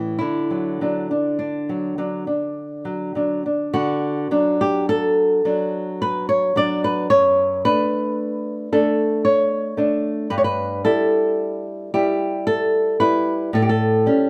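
Lyrical and serene, this short romantic guitar duo excerpt unfolds in D major at a slow, rubato 50-57 BPM in 3/4, with an up-front fingerpicked flamenco guitar singing the melody over a small-sounding, fresh-stringed nylon-string guitar accompaniment, both across the full 14.3 seconds, as audible finger squeaks and light reverb give the intimate feel of two players in one room while the harmony moves from D through D/F# and Em/G to a closing A7.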